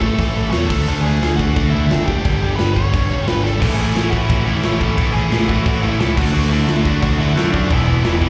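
A big rock drum kit drives this rowdy, energetic punk rock excerpt with a straight 4/4 pulse, its punchy kick, medium-tuned snare and bright crash cymbals ringing in a big room, with a drum fill at 3.4 seconds. Up front, a growling picked electric bass with overdrive pushes hard beneath a crunchy overdriven guitar riff treated with slapback echo. Above them, a dark, high-gain lead guitar carries the melody through distortion, slapback echo and tape echo. At 3.6 seconds a tight distorted guitar joins in the background with a second riff, thickening the wall of guitars. The harmony moves from A through D and G before returning to A, then D and E, and the whole performance sounds like a live gig heard through the venue's PA, wrapped in club reverb.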